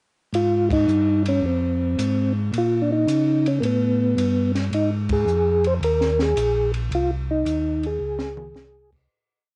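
Swung eighths in 4/4 carry this greasy, soulful soul jazz organ trio piece, where a flute-like, percussive tonewheel organ sings a motif-based melody through slow rotary speaker, chorus vibrato and cassette tape coloring, a round, key-clicking tonewheel organ walks the bass on its own slow rotary speaker, and a compact cocktail drum kit with punchy kick, high-tuned snare and a stick ride pattern sits back in the small room, with a band accent at 0.6 seconds, a drum fill at 8.0 seconds and a fade-out from 6.9 seconds on a dull-topped home cassette recording.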